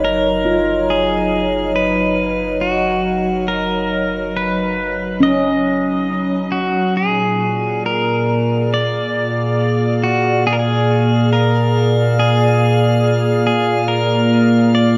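Serene and weightless, this ambient passage at 69 BPM in 4/4 is cut from a longer piece, drifting from a Bmaj7/F# chord to A#7 at 7.0 seconds. A clean electric pedal steel guitar, up front and played with fingerpicks and slide, carries the melody through a diffuse ambient delay. Beside it sits a warbling, nostalgic tape-like pad of detuned, wave-folded tones, holding sustained chords with chorus and its own reverb while a filter sweep moves across it during the first 7.0 seconds. A ringing handpan, struck with soft fingertips on nitrided steel, plays meditative arpeggios until 7.4 seconds, and a deep, round sine sub bass fades out by 6.9 seconds. In the background, a glassy texture of drifting overtones hangs high above, and the whole mix sits in a wet scoring-stage reverb.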